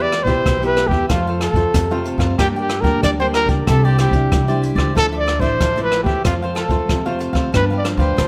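A breathy, whispered trumpet sits up front with a soft attack and vibrato, carrying a mellow jazz-style melody through this lively, sunny samba and choro excerpt. Beneath it, a crisp, bright cavaquinho is picked and a fingerpicked nylon-string guitar adds classical accompaniment, while a woody, thumpy upright bass is plucked and a brushed jazz kit with a boomy kick, hi-hat and rim click joins at 0.1 seconds. The harmony moves through chords such as Em, Gm, Cadd9 and G7 in a large studio room with moderate reverb.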